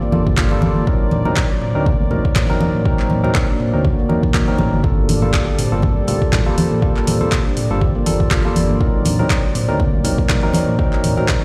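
A smooth chorused analog pad, a ringing stainless-steel handpan playing delayed arpeggios, and a dark, rumbling detuned saw bass open this hypnotic, earthy afro house excerpt in G minor at 121 BPM, all three pumping to the sidechain, before a barky tine electric piano adds clean, delayed, pumping stabs, warm acoustic congas sit in the background, and a deep electronic kick and an afro-pop kit of finger snaps, handclaps, metallic hi-hats and toms, both overdriven, drive the swung groove over Gm9 and D7b9b13 chords, the mix sounding as if played on a big sound system in a bare room with a large studio reverb.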